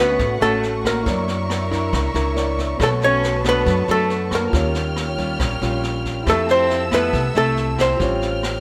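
A rough home-demo mix with light small-room reverb frames this sophisticated, breezy bossa nova fragment at 138 BPM, where a dark, clean, up-front archtop guitar carries the melody over a reedy bowed cello line, barky, lightly overdriven tine electric piano, fingerpicked nylon-string guitar, lush vibrato-rich studio strings, woody pizzicato upright bass and a distant, roomy brush kit with a boomy kick, moving through rich chords from Dmaj7 to A7alt.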